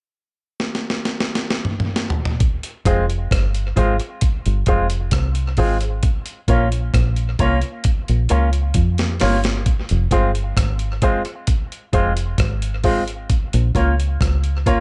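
A slow, straight 4/4 pulse at 66 BPM sets up this laid-back, hypnotic roots reggae excerpt in F minor, cut from a longer piece. The sampler-style breakbeat kit opens alone at 0.6 seconds with a fill across hi-hat, thumpy kick, rim click, medium-tuned snare and toms. The kit sounds compressed, gritty and tape-softened, re-recorded in a large room yet kept up front, with dub echo trailing its hits. At 2.9 seconds the rest of the band arrives: a dark, round, foam-muted fingered bass sits up front alongside the drums, a baby grand piano adds present stabs in its upper-middle register, and a clean, picked electric guitar through an envelope filter brings bright, twangy accompaniment coloured by tape echo. The harmony moves slowly between Fm and Bbm, and a second drum fill at 7.8 seconds leads into the closing stretch. The overall sound is dry and dusky, with a muted top end.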